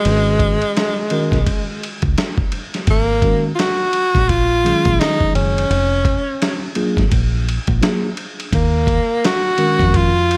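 A breathy, close-miked tenor saxophone with vibrato carries the smoky, nocturnal melody of this swung jazz-hop cut, sitting up front over a mellow tine electric piano heard through its built-in speakers, a round, punchy fingered dub bass, and a gritty, compressed sampler-style drum kit with a thumpy kick, re-recorded in a large room, all wrapped in vinyl crackle.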